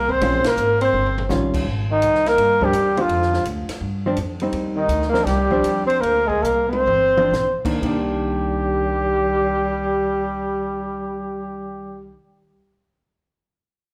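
Swung eighths in 4/4 drive this smoky, late-night small-group jazz in C minor at 117-167 BPM, easing into a slowdown from 4.5 to 7.8 seconds as the harmony settles on Cm9. A mellow trumpet carries the melody up front with vibrato and scooped notes, joined by a punchy, smooth-topped tenor saxophone on a second line, while a clean hollow-body electric guitar comps beneath and a woody gut-string upright bass anchors the low end. A compact cocktail kit with dark cymbals and a high-tuned snare adds drum fills before dropping out at 8.0 seconds, and a recital-hall reverb gives the whole band a roomy glow.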